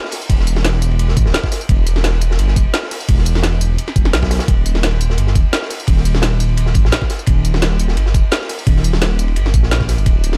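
A 172 BPM groove in 4/4, with a light swing on the sixteenths, drives this warm, dreamy liquid drum and bass excerpt. A crunchy acoustic breakbeat kit starts at 0.0 seconds, bringing gritty, saturated hi-hat, ride cymbal and a medium-tuned snare with a small-room feel, its top rolled off and high-pass filtering thinning its cymbals, hats, snare and room. Layered over it, a produced electronic kit adds overdriven hi-hat, snare and tambourine, with a woody snare and bright hats. At 0.3 seconds an overdriven electronic kick arrives with a knocking punch, alongside a detuned sawtooth bass that sits up front between D1 and B1, deep and rumbling with a beating unison shimmer, a fast attack and sustained notes. Studio reverb gives the production a dark, warm atmosphere.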